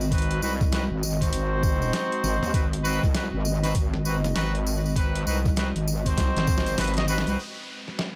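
A dark, moody analog pad, a heavy, saturated square-wave wobble bass and a jingly, close tambourine open this gritty, playful glitch hop excerpt at 99 BPM with a swung 16th feel over a G#7#9 chord. A pitched-down, tape-toned sampler kit with a thumpy electronic kick and medium-tuned snare joins alongside clear, distant horn stabs carrying light vibrato and digital delay, while the pad adds 12-bit sampler grit and sidechain pumping. A drum fill arrives at 6.2 seconds, and an up-front electronic downlifter closes the cut from 7.4 to 8.2 seconds in a dry mix.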